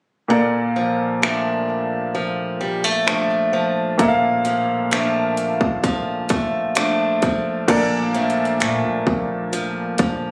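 A picked steel-string acoustic guitar sits up front, its boxy, parlour-sized tone playing arpeggios with a touch of tape echo and the faint squeak of fingers on strings. Beside it, a clear grand piano provides present accompaniment over a Bbmaj7 chord, giving this romantic, tender contemporary R&B fragment an intimate glow. From 1.2 seconds a trap drum kit joins with an electronic, produced character, pairing a hard-clipped kick with metallic hi-hats, finger snaps and a crash cymbal. At 7.7 seconds, as the music moves into a new section, a deep, boomy 808-style bass enters low in the mix, its sine tone carrying a noise layer, a fast attack and a mellow decay. Light reverb and the character of a phone recording in the room frame this short excerpt cut from a longer piece.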